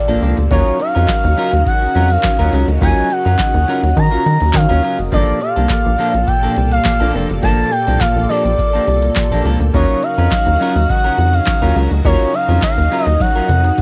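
A rubbery, bouncy square-wave bass sits up front in this slick, funky early-eighties boogie funk cut at 104 BPM, joined by a dry, booming analog drum machine with a deep kick, crisp snare, metallic hats, handclaps and toms, plus a grainy tube shaker in the background. Over the alternating Gm9 and Ebm9 chords, a smooth, expressive sawtooth lead carries the melody with vibrato, portamento, chorus and tape echo. Meanwhile a clean picked electric guitar plays a riff through lush chorus, a glossy polysynth adds accompaniment, and a shimmering violin string machine holds sustained chords behind. The whole has the light reverb of a home cassette recording, and a drum fill arrives at 13.2 seconds.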